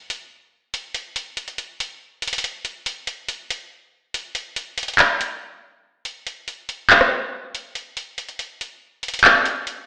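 An electronic drill drum kit sits up front in this ominous, menacing hip hop excerpt, with metallic hi-hats cutting through alongside handclaps and rim clicks. The tempo is 141 BPM in 4/4 with a half-time feel, giving the beat a heavy, stalking pace. The kit enters at 0.1 seconds, and a brief break at 5.6 seconds sets up a second section beginning at 6.1 seconds, where the kick is muted for the rest of the clip. The whole recording sounds as if it were played on a big sound system in a bare room, wrapped in a wet plate reverb and a large studio ambience. A narrow, AM radio character adds a gritty, lo-fi edge to the menacing atmosphere.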